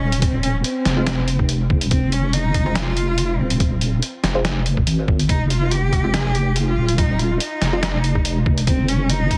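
Heavily compressed, radio-like sound in a digital ambience frames this cavernous, dark deep dubstep excerpt in F minor at 142 BPM with a swung half-time feel: an up-front, soft wobble bass of sine and triangle tones with chorus sits under a distant, expressive bowed cello melody rich in vibrato and portamento and trailing dub echo, while a pitched-down, muffled sampler-style kit of hi-hat and medium-tuned snare is joined by a thumpy electronic kick, and a mellow, nasal, detuned sawtooth chord stab with a resonant filter pluck, moving notch, phaser and dub echo hovers in the background from 1.0 to 7.8 s.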